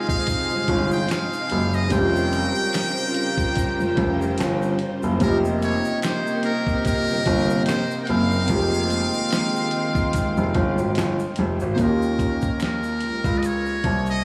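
Late-night and sultry, this slow R&B and neo-soul excerpt at 73 BPM in F minor sways with a light 16th-note swing, as a buzzy, close-miked trumpet with metal mute carries the melody through analog delay over a smooth grand piano bass that sits up front. A woody upright piano with analog chorus accompanies in the background alongside silky, warbling string-machine chords, while a distant, roomy horn section adds stabs until about 11.3 seconds and the strings hold until 11.8 seconds, where the harmony moves from Fm9 to Eb9. A gritty sampler-style drum kit with a thumpy kick and fat snare anchors the groove, tube shaker and finger snaps tick faintly behind it, and a huge ambient reverb leaves the whole mix dreamy.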